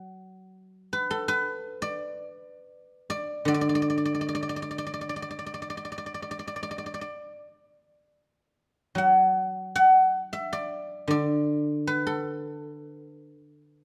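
Flowing and serene, this short cut from a longer Chinese traditional piece features a solo guzheng played with fingerpicks, its ringing, silvery tone sitting up front under close, detailed microphones and light reverb as it moves freely in rubato around 70-83 BPM in D gong mode, ranging from D3 to F#5 and shifting into a new section at 8.2 seconds.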